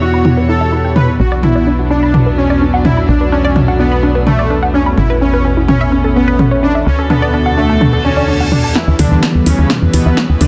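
Dense, heavily limited and bathed in a huge ambient reverb, this driving, hypnotic melodic techno excerpt at 127 BPM in E dorian pumps a smooth, airy supersaw melody, dark bowed strings, round analog pluck arpeggios under a filter sweep, a tight sequencer bass, an evolving analog drone and a nostalgic lo-fi tape-like pad against overdriven deep house drums with metallic hats, until a reverse cymbal and riser at 8.0 seconds, a very quiet electronic kick and a drum fill lead into a build-up where bold, brassy analog pad stabs enter at 9.0 seconds.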